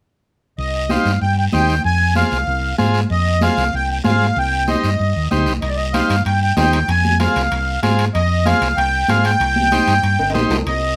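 Lightly reverberant, this passionate, driving cumbia excerpt in C minor at 190 BPM puts a reedy, sweet accordion melody with light tremolo tuning up front beside a dark, round, punchy fingered electric bass and a buzzy, overdriven vintage combo organ with light vibrato, while a raspy guiro and distant, thick-skinned, high-tuned congas sit in the background, saturated metal-shell timbales join at 5.6 seconds, and a drum fill arrives at 10.2 seconds as the harmony moves between C minor and F minor.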